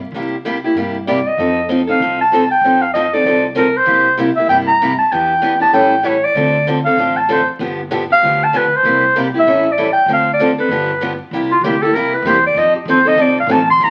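Playful and swinging, this brisk cut from a longer acoustic string swing tune in C mixolydian moves at 193 BPM, with a bright, boxy picked steel-string parlour guitar up front and a woody, thumpy pizzicato upright bass on gut strings underneath. A clear clarinet with light vibrato and scooped notes enters at 1.1 seconds with a jazz-style melody, then takes a solo from 11.3 seconds as the harmony shifts to a new section. The sound carries the crackle of a very old 78 rpm record and a wet studio reverb.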